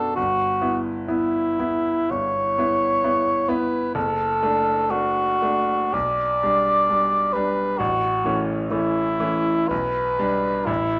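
In a rubato 4/4 that drifts between 55 and 68 BPM, this tender romantic classical duo sets a dark cor anglais melody, sung with light vibrato and a smooth top between E4 and D5, over a grand piano accompaniment, both placed up front and tuned to A4 = 442 Hz. The piano is bright and intimate, its action noise audible and its notes sustaining long as the harmony moves from Em/G through D/F# and G/B to A and back to G/B. A moderate large-studio reverb surrounds the pair, and the dark, warm production gives this short passage, cut from a longer piece, a soft-edged glow.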